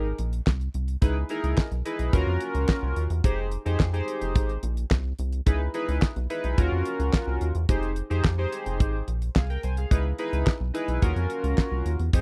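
Dry and close in a 1970s-style studio sound, this slick, danceable early-eighties boogie funk excerpt at 108 BPM in F phrygian puts a rubbery, hollow square bass with a nasal filter pluck beneath a glossy, chorused polysynth moving through Dbm9, Ebm9 and Fm9 chords, while a damped 70s drum kit with a fat snare, tight kick, hi-hat and handclaps enters at 0.2 seconds.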